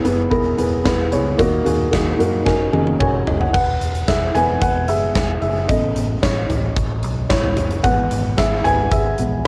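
A felt-muted upright piano, mellow and intimate with a thick-felt softness and a cassette-tape grain, sits up front in this uplifting, anthemic piano-driven pop excerpt at 112 BPM in a straight 4/4. A round, dark, foam-muted fingered electric bass and a huge arena drum kit with a punchy kick, bright cymbals and a pumping room sound support it, while moderate reverb gives the home cassette recording a modest sense of space. After drum and piano fills from 2.5 to 3.5 seconds, the piano takes a solo over chords moving from E to Aadd9 and E/G#.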